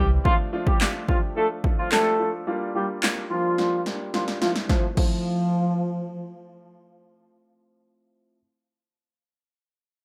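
An upbeat, summery dance-pop excerpt opens with a tight, vibrato-rich horn section carrying the melody up front over bright, brilliant grand piano accompaniment with deep bass, both softened by a low-pass filter as a filter sweep runs through the opening, while a punchy, overdriven analog drum machine with handclaps, crash and snare joins at 0.3 seconds, rolls through a fill into the change to Fmaj7 at 4.7 seconds, and drops out at 5.1 seconds, all in a rough home-demo mix with digital ambience.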